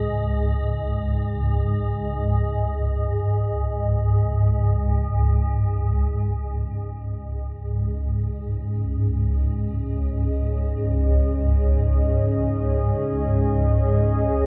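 Worn, warbling cassette tape colours this cavernous, desolate ambient fragment, cut from a longer piece. It sits in a huge reverberant space and drifts in free time, tuned slightly low to A4 = 435 Hz. A swarming drone holds the low register up front from the opening, its detuned, sine-based tone grainy and evolving, with a moving notch and a tense, vintage character. A dark analog pad fades in, with its sustained chords surfacing at 6.8 s above the drone. The pad's sawtooth and triangle layers, with a sub octave, sound deep and moody, thickened by chorus and shimmer reverb. Both parts hold on together until the fragment breaks off at 14.5 s.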